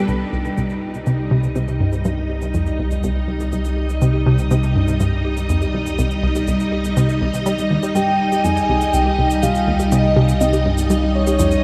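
A punchy, funky plucky analog bass riff roughened by 12-bit sampler grit, lush chorus and tape echo drives this hypnotic, mysterious stretch of sequencer-driven space music, set against vintage, full-bodied string-machine chords held up front with ensemble chorus, a deep, round analog bass with tube saturation, a very quiet, bright bubbling stepped-filter texture, and echoing bongos and shaker that fade in throughout, until a mellow, octave-layered synth lead with vibrato, chorus and tape echo enters at 7.9 s, the whole piece steeped in a huge, wet ambient reverb.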